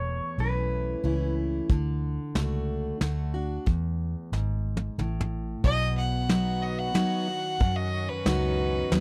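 A clear, biting fiddle takes the melody at 5.6 seconds, its smooth top and light vibrato giving this sunny, easygoing honky-tonk and classic country fragment an intense lift in an unhurried waltz time. Before it, a clean pedal steel guitar, played with fingerpicks and shaped by volume swells, offers a brief second line that ends at 1.3 seconds. A bright dreadnought acoustic guitar with fresh strings is picked throughout as accompaniment, over a dark, round, foam-muted electric bass with a punchy, amped tone. A soft brush drum kit with a tight kick and medium-tuned snare joins at 1.7 seconds and adds a fill just before the fiddle arrives. Once the fiddle enters, a studio string section floats in the background with pure, soft-attack sustained chords, while the dry, close sound of a 1970s-style studio keeps the up-front parts intimate.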